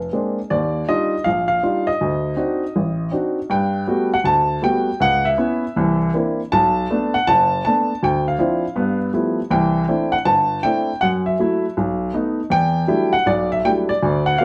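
The recording places the listener a little back in a studio room, where a wet reverb lends each note a short tail. This brief cut from a longer solo jazz performance features an upright piano, swung and playful with a warm mood. The piano has a woody, intimate character, and the noise of its action is audible. It spans F#1 to A5, voicing rich extended chords such as Bb9, Gmaj9, G13 and Em11. After an opening passage, a new section begins at 3.5 seconds and carries on until the music is cut at 14.4 seconds.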